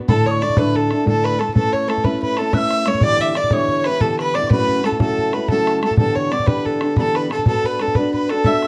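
A rich, earthy fiddle leads this spirited, wild Celtic slip jig at 122 BPM in 9/8, its single bowed line up front with light vibrato and an airy bow, while a mellow wooden whistle sits distant in the background with a soft, chiffy attack, gentle vibrato and a somewhat unsteady tone. Fingerpicked steel-string acoustic guitar, dark with audible finger squeak, carries chords moving from Dsus2 through Aadd9, Em7 and F#m7 to Bm, and a close, boomy bodhran drives the pulse. Moderate studio reverb and a dark production frame this brief section cut from a longer piece.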